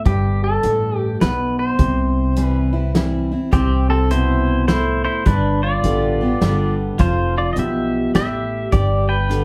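A picked dreadnought acoustic guitar opens this brief cut from a longer honky-tonk and classic country piece, nostalgic and easygoing at 104 BPM in a swung 3/4 in C major. Almost at once, an up-front, twangy pedal steel carries the melody with fingerpicked slides, volume swells and plate reverb, while a woody, thumpy pizzicato upright bass and a punchy natural drum kit of kick, medium-tuned snare and hi-hat settle under it. The chords move from G to C, then G, Fsus2 and back to G, and the whole band sounds set back in a reverberant studio room.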